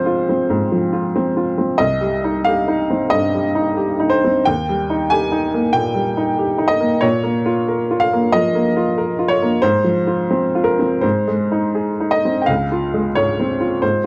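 A dry, close 1970s-style studio sound with light reverb frames this wistful, melancholic neoclassical minimalist piano piece in Bb dorian, where a clear, woody upright piano with short sustain sits up front and plays alone throughout at a rubato 81-96 BPM in 4/4, moving from Fm/Ab through Cm, Eb and Bbm before shifting at 12.5 seconds to a closing Dbmaj7 in this short cut from a longer work.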